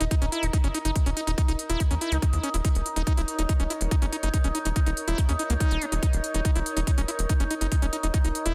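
A dense, heavily limited modern master with digital ambience frames this alien, intense psychedelic trance excerpt, running at 142 BPM in a straight 4/4 and tuned to A4 = 444 Hz over an Eb5 chord. An up-front, layered electronic kick drum arrives at 0.1 s and drives until 8.2 s. Beneath it, a punchy sawtooth and square-wave sequencer bass plucks through a moving notch filter in the low register, while crisp, tape-tinged electronic hi-hats sit on top. A squelchy, gritty acid bass riff, saturated and resonant with a filter sweep, runs through delay and sidechain pumping. Higher up, an overtone-sweeping sawtooth and sine drone holds sustained chords on Eb4 through chorus, phaser and reverb, and a nostalgic, lo-fi, detuned pad warbles in the background between Eb4 and Eb5, also pumping with the sidechain.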